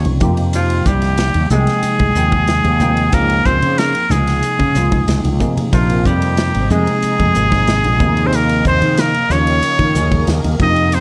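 A muted trumpet leads this slick, driving electric jazz fusion excerpt at 92 BPM, its nasal, up-front tone carrying vibrato and scooped notes over chords moving from Fm9 to Eb9sus4. A dark, clean hollow-body jazz guitar plays a second line in the background, a bell-like tine electric piano with ensemble chorus supplies accompaniment, and a fretless electric bass anchors the low end beneath a tight studio drum kit and very quiet, ringing congas. After a drum fill at 5.2 seconds, a shimmering vintage string machine with a slow attack brings in sustained violin chords at 5.7 seconds, all in a dry sound.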